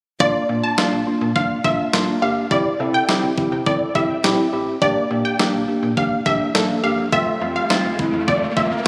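Nostalgic and bright, this synth-pop excerpt moves at 104 BPM in straight 4/4 over a Bb, C, Gm/Bb, F progression. A worn, slightly out-of-tune tine electric piano with phaser carries the accompaniment up front, a full-bodied, detuned unison sawtooth pluck with tape echo adds a second line, a snappy slap-like FM bass with a metallic attack sits underneath, and a clean 12-bit drum machine supplies a thumpy kick and medium-tuned snare. A background riser enters at 5.8 s, and the mix, captured on a phone in the room, is treated with moderate lush hall reverb and compression.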